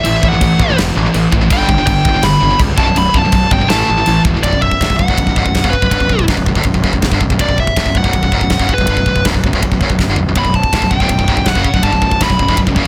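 A half-time feel at 162 BPM in 4/4 opens this dark, epic heavy metal excerpt in B minor, where a dark, high-gain lead guitar with tape echo carries the melody over a bright, picked distorted riff guitar, a very quiet heavy high-gain guitar that drops out at 4.4 seconds and returns at 10.4 seconds after a drum fill, a growly fuzz bass with overdrive, and an up-front acoustic kit with a tight kick, medium-tuned snare, toms, crash and ride, all in studio reverb with a dense, heavily limited modern master.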